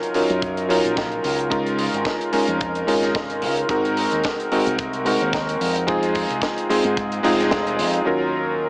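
Nu-disco at 110 BPM in Eb dorian, this short cut from a longer piece feels cosmic and sleek, with a light 16th-note swing. A clear, vintage electric grand piano sits up front carrying the chords, its clangy low end and chorused unisons colored by sidechain pumping, tape echo and a cassette tape character. A tight funk drum kit supplies hi-hat and a high-tuned snare with a small-room, mid-forward sound, joined at 0.4 seconds by a tight acoustic kick drum. A fingered electric bass enters at 0.3 seconds, bright and direct through an amp with an envelope filter, moving between F1 and Ab2. The harmony moves from Ebm9 through Db6, Ab9 and Fm7 before returning to Ebm9, and the band hits an accent at 7.5 seconds. A moderate spring reverb and the home-cassette, small-speaker sound give the whole a lo-fi intimacy.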